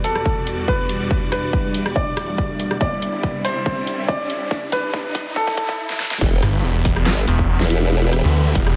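Heavy and menacing, this half-time wobble dubstep excerpt at 141 BPM in E minor opens with a brilliant grand piano melody over huge, lush supersaw chords pumping under a phaser, a deep, moody ambient pad in the background, a punchy overdriven kick and a huge-snare drum kit, joined at 1.8 seconds by a background riser, all building through a filter sweep and drum fills until the drop at 6.2 seconds unleashes a wobbling formant-sweep bass and a snarling, growling distorted saw bass up front.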